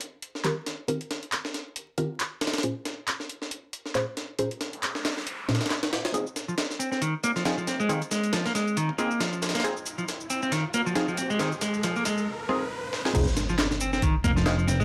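A swung breakbeat groove in 4/4 opens this raw, gritty breaks cut: a compressed, sampler-style kit with a thumpy kick and high-tuned snare sits up front, joined by dry analog handclaps and shaker, while dark, muted sawtooth chord stabs pluck through phaser and dub echo. A noise sweep leads into a build-up at 6.1 seconds, where a picked electric bass with tube saturation enters in the background and a clean, up-front electric guitar riff arrives, its tone roughened by 12-bit sampler grit and trailed by dub echo. A riser and drum fills push toward the drop and impact at 13.2 seconds, all under a coat of vinyl crackle and moderate studio reverb.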